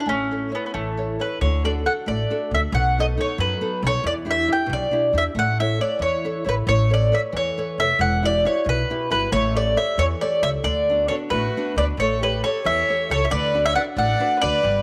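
Italian folk in the manner of a serenade, this lively, romantic excerpt moves at 91 BPM in a straight 6/8, centered in D major. The mandolin carries the melody up front, its picked double strings sounding woody and warm, while a small nylon-string guitar fingerpicks the accompaniment, the occasional finger squeak audible beneath it. An upright bass, played pizzicato on steel strings, sits forward with a warm, woody tone from 0.1 seconds onward. At 11.1 seconds a single dark violin joins with a bowed second line, its vibrato adding a shadowed, singing color for the closing moments. The harmony passes from A and D through B7 and Em7 to colored chords like Aadd9 and Emadd9, settling into an alternation of A7 and D6. A moderate plate reverb gives the ensemble a gentle glow and sense of space, and the passage ends as a cut from a longer piece.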